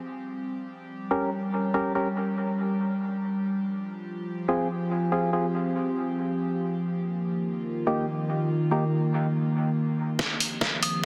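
A resonant, sawtooth-edged drone with moving overtones and chorus anchors this dark, brooding deep dubstep fragment, a filter sweep carrying it through Gdim, Fm and Eb chords, while a hollow, percussive organ stab with dub echo enters at 1.1 s; a drum fill at 10.2 s then brings in a punchy, overdriven electronic kick and a gritty, pitched-down trip hop sampler-style kit of hi-hat and snare, and an eerie, inharmonic FM synth bell with phaser arrives at 10.8 s, set in a huge ambient reverb.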